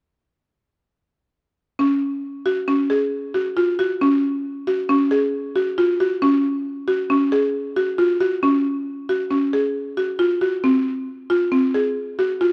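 Contemporary chamber music in an uneven 5/4 at 136 BPM, this restless, playful fragment features a solo buzzing marimba with medium hard mallets, its woody, dry tone sitting up front in a boxy small room with light reverb as it plays between C4 and Ab4 from 1.8 to 12.5 seconds.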